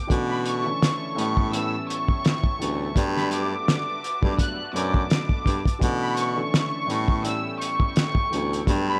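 Boom-bap hip-hop with a dark, tough mood, built on a cloth-damped, thuddy drum kit with a fat snare and tight kick, a breathy, close-miked baritone saxophone carrying the bass line, a woody, slightly detuned upright piano comping underneath, a biting chamber violin section with a tape-echoed melody up high, and a warbling, chorused analog pad sustaining chords in the background, all captured in a dry, gritty hardware sound with transformer saturation.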